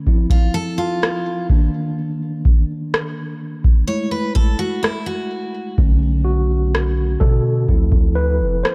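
A booming analog drum machine, with a deep kick, rim click and gritty 12-bit sampler texture, sets a straight 63 BPM 4/4 pulse for this moody, late-night contemporary R&B fragment, where a mellow tine electric piano takes the solo over chords moving from Fmaj7 to Dm7, a bright picked steel-string acoustic guitar plays arpeggios with delay until 5.7 s, and a long, sine-toned 808-style bass enters at 5.8 s, all under a dark digital ambience.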